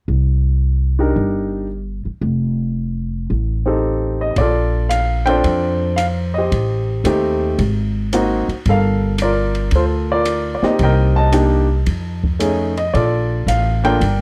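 This jazz piano trio excerpt swings at a relaxed 112 BPM in 4/4, with a sophisticated, unhurried mood in Bb major. The upright bass opens alone at 0.1 seconds, played pizzicato on steel strings with a woody, growly, thumpy tone that sits up front. The grand piano enters at 1.0 seconds to carry the melody with a warm, short-sustained sound, touched by a slapback echo, over changes that move from Cm9 and F7 toward Bbmaj9 and on through Am7b5, Ab9 and Gm9 before resolving through F7alt to Bbmaj7. At 4.4 seconds an open jazz drum kit joins on hi-hat, kick, ride and snare, sitting lower in the mix with dark, smooth cymbals, a medium-tuned snare and a punchy kick in a small-room sound. The dry, close production recalls a 1970s studio session, with little reverb.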